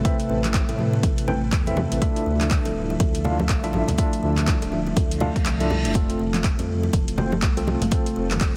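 Heavily compressed and radio-like with little reverb, this hypnotic, spiritual afro house excerpt sets an overdriven, up-front deep kick and a drum kit of handclaps, metallic hi-hats and toms over ringing, soft-handed congas in the background, while a rumbling detuned saw bass, buzzing woody kalimba arpeggios, worn tremolo electric piano stabs under a filter sweep, and an ethereal chorused pad all pump with the sidechain throughout, as a reverse cymbal rises at 5.2 seconds and the kick drops out from 5.5 to 6.0 seconds.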